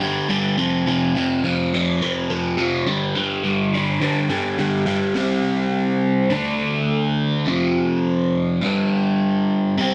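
Light reverb and a digital ambience frame this restless, bittersweet rock fragment at 104 BPM in a straight 4/4, where a solo overdriven electric guitar, bright, picked, double-tracked, compressed and up front with a phaser, moves through G5, F5 and G5 before the feel drops to half time at 5.2 s for C5, D5, F5 and G5 until the cut at 9.9 s.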